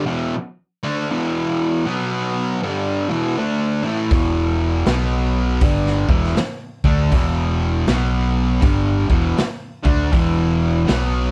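A slow 80 BPM shuffle in 4/4 with swung eighths drives this brooding, heavy blues rock and southern rock excerpt in E minor, as a bright, double-tracked fuzz guitar riff circles E5, B5 and Em alone until the fingered electric bass and raw garage drum kit enter at 4.1 s. The bass sits dark and round beneath the compressed, up-front guitar, while the kit's punchy kick, medium-tuned snare and hi-hat carry a gritty, saturated character, a pumping small-room sound and a rolled-off top. The dry recording gives the power trio a close, unvarnished feel.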